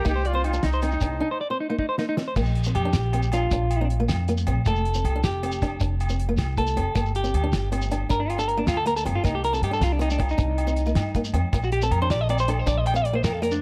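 A clear, close-miked trumpet opens this sunny, carefree highlife guitar band piece in Bb major, 105 BPM in a straight 12/8, with scooped, vibrato-laden notes that stop at 1.4 s, over a boxy, fingerpicked ladder-braced acoustic guitar with old strings and a woody, thumpy pizzicato upright bass. After a break with a drum fill at 1.8 s, the twangy, clean electric guitar, already heard in arpeggios, takes an up-front solo from 2.4 s, its tone carried by tape echo. A dry, damped 70s drum kit with a fat snare, tight kick and dusky cymbals, a grainy shekere and distant, ringing agogo bells complete the groove over a chord cycle moving from Cmadd9 through Bbadd9, Fadd9 and Gm, all in a light reverb.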